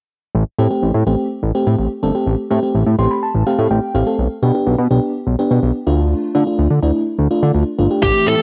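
A fat, detuned sawtooth bass opens this cool, driving synth-pop fragment at 125 BPM, joined at 0.6 seconds by a lush, dreamy FM electric piano with a soft pad layer, colored by chorus, tremolo and cassette-tape grit, which plays a fill over the Am7 before moving through the G/B and Dm changes. At 8.0 seconds, just before the cut, a distorted, compressed fuzz lead guitar, a swirling, bright phased pad and a punchy house kit with crash and kick arrive together, all under light reverb and a homespun cassette sound.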